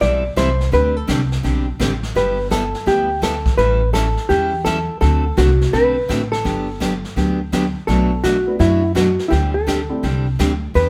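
A down-home, cheerful western swing clip at a brisk 168 BPM in 4/4, with a swing feel on the eighths and chords moving from Am9 through G69 and Gmaj9 to a closing D7sus4. A clean, hollow-body electric jazz guitar carries the melody up front, backed by a bright, full-bodied picked dreadnought acoustic and a woody, thumpy gut-string upright bass played pizzicato, while a brush drum kit with a boomy kick sits softly behind them. A mellow upright piano with long sustain slips in at 7.9 seconds, and the whole band sounds live in one room with moderate studio reverb.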